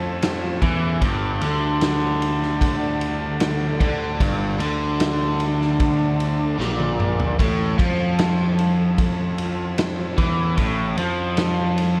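Lightly reverberant and cut from a longer piece, this trippy, mysterious psychedelic rock passage at 75 BPM in A phrygian dominant puts a bright, overdriven, double-tracked garage guitar riff with phaser up front over a fuzzy, picked electric bass, while a buzzy vintage combo organ holds sustained chords in the background and a raw acoustic drum kit with a stone-room sound, punchy kick and rolled-off top enters at 0.2 seconds and plays a fill from 6.6 to 7.4 seconds as the harmony moves from A to G5 and back to A.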